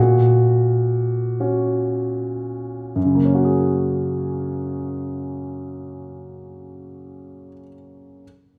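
A church-like recital hall wraps this short fragment in a generous, lingering reverb, while the solo concert grand sits up front in the mix with a warm, natural tone and a deep bass. The piece is neoclassical minimalist piano in 6/8, played with a free, rubato feel that makes it sound hopeful and peaceful. The piano plays alone for the full 8.2 seconds, ranging from F#2 up to G#4. The opening phrase slows as it unfolds over its first 3.0 seconds, resting on an inverted major chord. At 3.0 seconds a new section begins and the harmony opens into a chord with an added ninth, its colour blooming into the hall's long decay before the cut from the longer piece.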